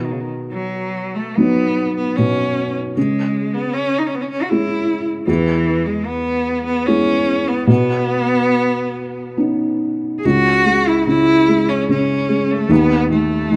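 Played rubato in 3/4 at roughly 67-79 BPM, this wistful, pastoral Celtic slow air fragment has a single bowed cello carrying the melody with a rich, focused tone and vibrato, sitting up front. A felt-muted upright piano accompanies throughout on a soft, dark, boxy sound, its action noise audible, as the harmony moves from B through C#m and E to Badd9 before shifting to a new section at 10.2 seconds. Light studio reverb surrounds the rough home-demo mix, which cuts off mid-piece at 13.6 seconds.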